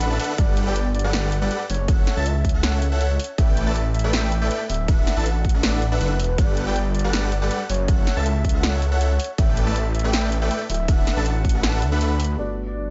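Future bass in G lydian at 160 BPM with a half-time feel, this euphoric, bright drop cycles through Gmaj9, F#m7, A7sus4 and D6. A round, octave-layered synth lead carries the melody through chorus, phaser and tape echo, while an airy, dreamy lead plays background arpeggios through digital delay over huge supersaw chords and a thick, saturated detuned saw bass, each of these pumping with the sidechain. A punchy big-room kit with low-passed snare and hats runs from the start and the up-front electronic kick enters at 0.4 s before dropping out at 12.0 s, and then a muted, intimate felt upright piano with audible action noise and 12-bit sampler grit appears at 12.4 s, the mix sitting in a digital ambience.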